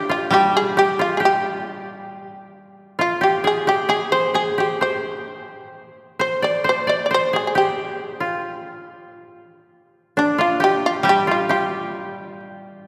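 This short excerpt of Japanese traditional music opens with a shamisen carrying the melody and a koto playing a second line together from the first moment, both sitting in the same register and up front. The mood is austere and calm, with a slow, rubato feel around 67 BPM in 2/4, centred on G. The shamisen is the most powerful voice, its plectrum-plucked tone bright, buzzing and percussive. The koto second line sounds woody and warm under fingerpicks. A second koto adds a low accompanying note at 0.3 seconds, falls away by 3.0 seconds, and returns at 11.0 seconds, its dry, bright, woody tone set further back. A long, church-like reverb surrounds the playing, giving the sparse lines a resonant, spacious setting.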